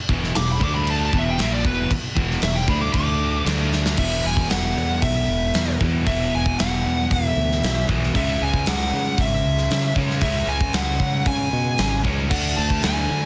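A straight 4/4 hard rock groove at 115 BPM in E mixolydian drives this energetic, swaggering excerpt, where a crunchy, double-tracked overdriven guitar riff and a bright, growly fingered bass move over E5 and D5 power chords toward C#m and D, a big-room rock kit with a medium-tuned snare and tight kick sits up front and throws a fill at 3.7 seconds, and a smooth overdriven lead guitar solos high above from 0.4 seconds, all under studio reverb in a dense, heavily limited master.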